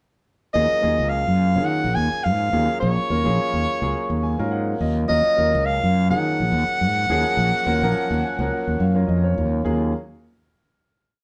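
A breathy, whispered soprano saxophone carries a free, intimate jazz melody with light vibrato up front in this slick, driving electric jazz fusion piece, over a bright, amped fretless bass playing a syncopated riff and a boxy grand piano with audible action noise that adds rootless, syncopated chord stabs and fills at 4.0 and 7.9 seconds, before the band, playing live together in one moderately reverberant room, settles on a final chord at 9.7 seconds.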